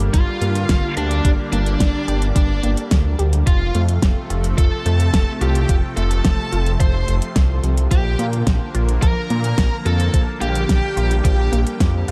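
A dark, dry mix frames this cinematic, driving synthwave excerpt at 108 BPM in straight 4/4, moving through Gm, F and Bb. A thumpy, overdriven electronic kick and a layered pop kit with a fat snare and metallic hats push beneath a thick, detuned saw bass that sits up front with tube saturation, while a lush unison pad pumps with sidechain through chorus and phaser. A warbly, lo-fi pluck plays arpeggios in the background through chorus and delay, and from 0.1 s a distorted, bluesy lead guitar carries the melody with delay over a shimmering vintage string machine playing a high second line.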